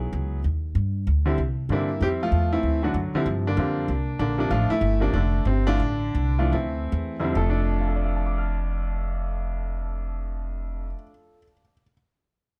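Playful and warm, this short fragment of swinging jazz sits in 4/4 with a lilting eighth-note feel. A baby grand piano carries the melody across a broad register, its tone clear and intimate, with audible action noise and a long, natural sustain. Beneath it, a plucked upright bass with steel strings gives a woody, dark low end, and both instruments sit up front with close, detailed miking and little room reverb. The harmony opens on a rootless Amaj9#11 and moves through a varied run of chords before settling on F6, with the pace easing between 4.5 and 7.4 seconds. The bass drops out at 10.9 seconds, leaving the piano alone until the clip ends at 11.9 seconds.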